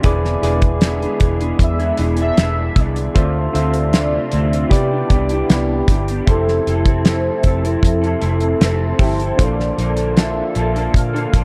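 This indie and bedroom pop excerpt drifts at 77 BPM in a sunny, dreamy mood, moving from E7 through Dm7 and Cmaj9 to Fmaj7 and Bbmaj7. A dry, up-front 70s drum kit with a fat snare and a round, foam-muted bass anchor a lo-fi, slightly broken-up electric guitar with warbly pitch drift, mellow chorused electric-piano-like keys and a hollow, flute-like pad in the background. At 1.6 s a velvety, smooth synth lead with phaser, lush chorus, vibrato and analog delay enters to carry the melody, all set in a dark production with light studio reverb.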